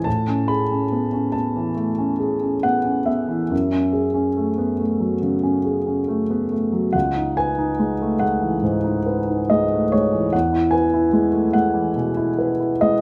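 Classical impressionist solo piano at a rubato 70 BPM in 4/4, hazy and serene, drifting through lush extended chords from Amaj9 to F#m9, C#m11 and Eadd9 across this 13-second excerpt. The clear grand piano sits up front with an intimate, natural tone, long sustain and audible action noise, spanning C#2 to B5. A moderate large-studio reverb with a 1.3-second decay surrounds it in a soft halo of space.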